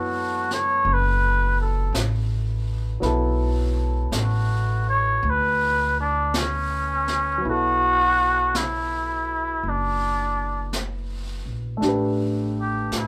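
A cup-muted trumpet opens this smoky, intimate jazz ballad in B minor, playing a veiled, raspy solo melody with vibrato and scooped notes from the very first moment. The horn sits up front over grand piano chords and a woody, growly upright bass played pizzicato, all at a slow 55 BPM in 4/4 with a swung eighth-note feel. A brushed drum kit with a high-tuned snare and hi-hat joins at 0.5 seconds, keeping low in the blend. The harmony moves from Bm9 to Bm7 at 7.4 seconds, where a second section begins, and settles on A5 at 11.8 seconds. The band sounds as if it is playing live together in a small room with a moderate, natural reverb, giving this short cut from a longer piece a vintage, late-night character.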